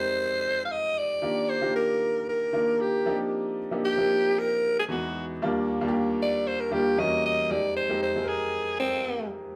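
A breathy, raspy alto saxophone sings an up-front pop solo with vibrato and scooped notes over a clear, intimate baby grand piano whose action noise is audible, the two playing live together in a wet studio room through lush chords such as Fm9, Ebmaj9 and F13sus4, giving this short, breezy, glossy cut from a longer piece its polished feel.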